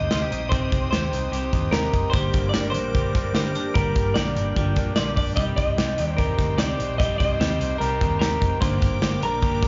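A twangy, compressed clean electric guitar carries the melody over a modern studio drum kit with a punchy kick in this restless, bittersweet jangly indie pop excerpt at 148 BPM in C minor, joined by a foam-muted vintage bass, a bright, slightly broken-up guitar picking arpeggios through spring reverb, a dark chorused guitar and a ringing hard-mallet vibraphone in the background, and a swirling phased sawtooth pad, all heard as a live gig through a club PA with a dull top end as the chords move between Cm and Gm.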